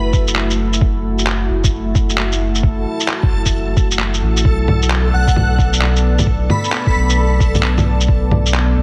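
Heavily compressed and lightly reverberant, this short excerpt from a longer future garage piece has the squeezed, boxy sound of a radio broadcast, and its mood is wistful and melancholic under a swung shuffle. A deep, moody pad sustains warbling, vintage-toned chords from F#m7 to Bm7 throughout, with slow-blooming edges and chorus, pumping against the beat via sidechain alongside a soft, round dub sub bass that sits up front at the bottom. From 0.1 seconds a muffled, pitched-down, thumpy sampler-style kick drives the groove, together with an up-front, compressed cluster of electronic shaker, handclaps and bongos. An airy, dreamy lead flickers for an instant at the start, then returns from 5.1 to 7.3 seconds with a gentle melody coloured by chorus, cassette-tape wear and delay, its noisy, detuned tone shifted by a moving notch. Beneath it all, a faint reversed texture swells on a single bright, granular note, bathed in its own reverb and adding a hazy shimmer.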